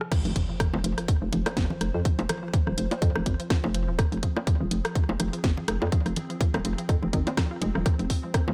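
Minimal techno with a hypnotic, cool mood, this excerpt drops straight in on an F minor chord, led by a tight, up-front electronic kick with a swung feel. A garage kit of cracking snare, bright hats, rim click and crash cymbal sits alongside tape-tinged electronic rim clicks, bongos and congas treated with delay, while a hollow, bouncy FM bass knocks up front with sidechain pumping from 0.3 seconds. In the background, a juicy, squelchy resonant blip pluck riff with chorus and digital delay, a pulsing, detuned gated texture with long release, and a brief electronic impact through 2.1 seconds fill out the fairly dry mix.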